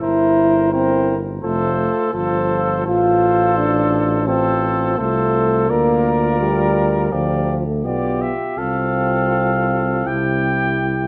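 A noble brass quintet excerpt in F major opens with all five players sounding together at a moderate 84 BPM in 4/4, the beats falling slightly unevenly. The mellow trumpet carries the melody between C5 and G5 with a punchy, vintage edge, while the flugelhorn sings a second line beneath it, its light vibrato sounding distant and roomy. In the background, the French horn holds a narrow accompaniment around E4 to F4 with a warm vibrato. The euphonium, the most prominent voice in the mix, fills the middle with a rounded, old-fashioned tone before dropping out at 10.8 s, and the close-miked tuba anchors the bass from F1 to D2 up front with a soft, lightly wavering sound. The harmony moves from C7/G through F, Bb/D and G7/D to F/C, and it comes to rest on C at 10.1 s, all heard within a scoring stage reverb that lingers for about 1.8 s.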